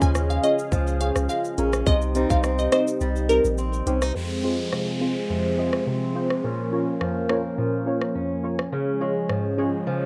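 Dancehall in F minor at 105 BPM, hypnotic and sultry, cut from a longer piece: a glassy, crystalline wavetable pluck carries the melody until 3.4 s over a punchy, pitch-dropping sub bass that stops at 4.1 s, with a tight, tape-toned island pop drum kit of kick, hi-hat, rim click and shaker whose kick drops out from 3.0 to 4.2 s. A smooth analog pad with chorus, sidechain pumping and a low-pass filter sustains chords throughout, alongside a boxy fingerpicked swing-style acoustic guitar with audible finger squeak playing arpeggios and a dark, warbling, detuned chord stab with the same pumping and filtering that enters at 0.4 s. From 4.2 s a filter sweep and faint downlifter and riser effects open a new section moving through Fm, Bbm and Db, all in a dry, rough home demo mix.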